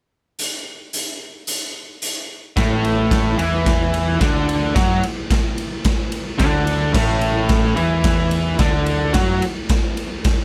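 Rowdy and raw, this garage rock excerpt opens with a gritty, boomy drum kit alone in a pumping stone room before an overdriven, double-tracked guitar riff and a growling picked bass crash in at 2.6 seconds on an A5 chord, all kept dry, with the drums and guitar up front.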